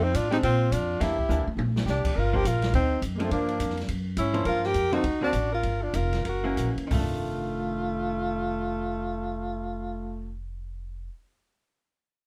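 A small, moderately reverberant room gives this short cut from a longer small-group swing and bop piece a close, intimate sound, moving in 4/4 at 177-209 BPM with a swung eighth-note feel in F mixolydian. A warm, up-front tenor saxophone carries the melody with vibrato and scooped notes, while a breathy, whispered alto saxophone in subtone adds a soft-edged second line, over a woody, thumpy pizzicato upright bass and a clean, compressed hollow-body archtop guitar comping through chords such as Gm7, D7b9b13 and Gb7. An acoustic drum kit with dark cymbals and a boomy kick plays a fill at 1.3 seconds and drops out at 7.0 seconds, after the tempo slows toward a closing F6 chord.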